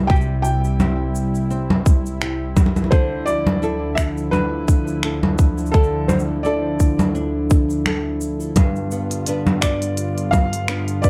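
A lightly swung groove from a tight, up-front electronic kick and an organic electronic kit of congas, finger snaps, crisp hi-hat and shaker carries this hopeful folktronica excerpt, where a felt-muted upright piano with audible action noise sings a soft, boxy melody through delay and plate reverb over a smooth, detuned sawtooth pad with chorus and fingerpicked nylon-string guitar arpeggios with delay and finger squeak, moving from C to Dmadd9 before a band accent and brief break at 7.9 seconds give way to G7 at 8.6 seconds, in a dark, warm production.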